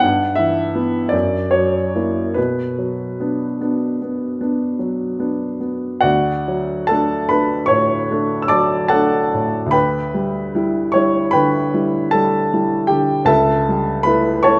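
A lone baby grand piano opens on a mournful Em/G chord that leans into F#7 before settling on Bm, setting the melancholic mood of this romantic classical nocturne. The piano sits up front with a smooth, vintage tone, ranging from C#2 up to E6, and its rubato phrasing stretches the lilting nine-beat metre into uneven, unhurried pulses. At 6.0 s the music turns toward a brighter major colour on a D chord, then moves through Em7/D and ends this short passage on A7/C#, as if still reaching for resolution. A moderate recital hall reverb gives the instrument a natural sense of space around its intimate voice. The recording is cut from a longer piece, closing at 14.6 s.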